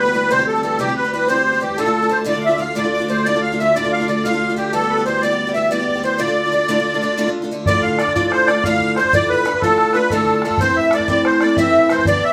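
A wet studio reverb wraps this short cut from a longer piece, with the band playing live together in one room. It is a dark yet spirited Celtic slip jig in D dorian, moving at 122 beats per minute in dotted quarters over a straight 9/8 lilt. Up front, a shimmering musette accordion carries the melody with its trembling, mid-forward reed tone, while a second, fuller accordion sits close-miked and dry in the background on a supporting line. A bright, boxy parlour guitar, picked and also up front, supplies the accompaniment across C, Dm, Em and Am harmonies. For the opening 7.7 seconds a single intimate cello holds a low D drone, bowed sul tasto with an airy bow, soft attack and light vibrato. When it stops, a boomy, band-limited bodhran with a vintage, open sound enters for the remaining stretch to 12.3 seconds.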